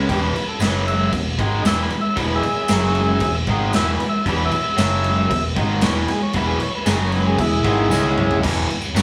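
A buzzy, overdriven combo organ with light vibrato takes the solo from the start of this swaggering, raw garage rock excerpt in E major at 115 BPM, over an up-front, double-tracked guitar riff with spring reverb and a dark, round picked bass. A saturated, gritty drum kit with a punchy kick, medium-tuned snare and rolled-off top pumps in a bright stone room, hitting a fill at 7.9 seconds, while a jingly tambourine sits close and dry in the background from 0.6 seconds. The band sounds as if it is playing live together in one small room with moderate reverb.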